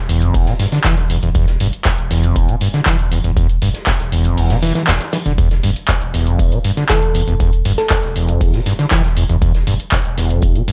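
A home cassette recording with light reverb carries this driving, trippy acid house piece, where a squelchy, gritty sawtooth acid bass riff with a resonant filter sweep sits up front over a round sine sub bass, both pumping to the sidechain, while an overdriven deep electronic kick, a punchy analog drum machine with handclaps and hi-hat, and a loose acoustic indie kit of hi-hat, snare and tambourine in the background keep the groove moving; the kick drops out from 4.4 to 5.4 seconds, and a tine-like FM synth pluck with chorus and tape echo appears briefly at 6.9 seconds.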